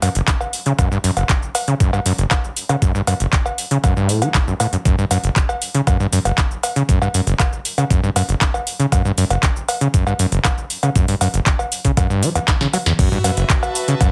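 Acid house at 118 BPM in 4/4 with a straight feel, this gritty, trippy excerpt sits in F# phrygian and is cut from a longer piece. A squelchy, resonant sawtooth bass riff runs from the start, distorted and tube-saturated with tape echo, its plucked filter giving each note a fast attack and a decaying tail. A booming analog drum machine plays alongside it with cabasa, cowbell, crash, handclaps, hi-hat, a tonal snare and toms, its metallic hats and clap caught in a short room, while a thumpy, sampler-style electronic kick joins at 0.3 seconds and sits up front. After a drum fill at 12.5 seconds, the drop arrives at 13.0 seconds on an F#m chord, where a rich, earthy chamber string section enters with light vibrato and a smooth top, pumping against the sidechain. The whole mix has a heavily compressed, radio-like sound in a moderate small room.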